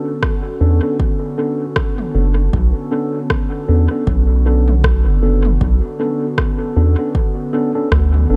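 A swung 78 BPM groove in 4/4 drives this hazy ambient dub excerpt in B minor. An overdriven, layered electronic kick sits up front beside an overdriven electronic kit of rim clicks and toms sent into dub echo, and a round, dark analog bass enters at 0.6 s to anchor the low end. A nostalgic, lo-fi, warbling pad with chorus and built-in reverb holds sustained Bm9 chords, while a mellow, clean tine electric piano plays stabs through a low-pass filter and dub echo, all in an echo-heavy mix with little room reverb that leaves a hazy, deep feel.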